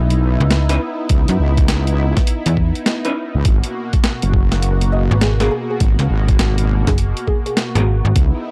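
This gritty, playful glitch hop excerpt opens on a smooth, detuned sawtooth pad holding sustained chords, coloured by 12-bit sampler grit, chorus and sidechain pumping, alongside a heavy, wobbling bass up front. A sampler-style kit of hi-hat and medium-tuned snare comes in with overdrive, joined by a snappy FM bass with a metallic attack, and at 1.1 seconds a thumpy, overdriven electronic kick lands up front. An electric guitar through a small old amp adds slightly broken-up picked stabs, treated with spring reverb, analog delay and sidechain pumping. From 4.9 to 7.5 seconds a woody, nasal wave-folded pluck plays the melody with ensemble chorus and analog delay. The groove swings on sixteenth notes over a C#m9 moving to G#m9, and the mix is dry, carrying cassette tape character and transformer saturation.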